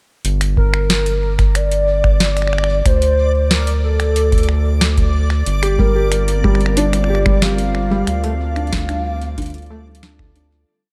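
A dark, warm production with light reverb frames this intricate and glitchy IDM piece in G minor at 92 BPM, moving from Gm through D5, Gm7 and Dm7 and fading out from 7.2 seconds. A deep electronic kick with a broken pattern anchors a booming analog drum machine of crisp snare, metallic hats and finger snaps in a glitched, ever-changing beat, while a round, wave-folded analog bass holds sustained roots up front and a warbling, nostalgic lead with lush chorus, vibrato, portamento and delay sings motif-based call phrases. A reversed, swelling granular texture holds a bright high note, and from 5.5 seconds a glassy, ethereal FM pad with ensemble chorus sits in the background beneath a felt-muted upright piano whose 9-step arpeggio loop, carrying audible action noise and 12-bit sampler grit, drifts against the bar.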